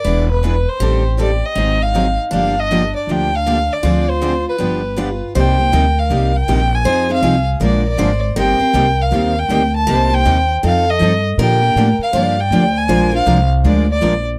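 Fiery and swinging, this acoustic string swing excerpt in the jazz manouche style moves at 159 BPM in 4/4, with a bowed violin carrying the melody up front in a nasal, vibrato-laden voice while a gut-string upright bass thumps darkly underneath. A picked steel-string guitar plays a bright second line, and two more picked acoustic guitars supply the accompaniment, one full-bodied and the other sitting in the background with a fresh-string sparkle and audible finger squeak. The sound is dry and close, like a 1970s studio session, as the harmony winds from E7 through chords like Am7b5, Cm9 and Eb69 before settling on Bb9.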